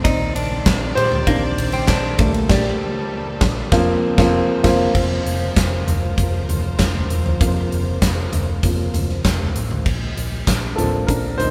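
A concert grand piano leads this anthemic piano-driven pop passage, taken from a longer piece, and carries solo lines across all of its sections, with an intimate, natural sound, deep bass and audible action noise. An up-front arena drum kit drives it with a punchy kick, a medium-tuned snare, handclaps, toms and bright cymbals in a pumping room, while a dark, round, foam-muted electric bass enters at 0.1 seconds. A clean, compressed electric guitar, recorded direct, plays a brief picked riff that stops at 2.3 seconds, and the band hits an accent from 2.5 to 5.0 seconds. Lush bowed strings with vibrato sit in the background with sustained chords until 9.8 seconds. The harmony moves from Cmadd9/Bb through Gmadd9/Bb and Fsus4 before settling on Bb, and a large studio reverb gives the feel of a band playing live in one room.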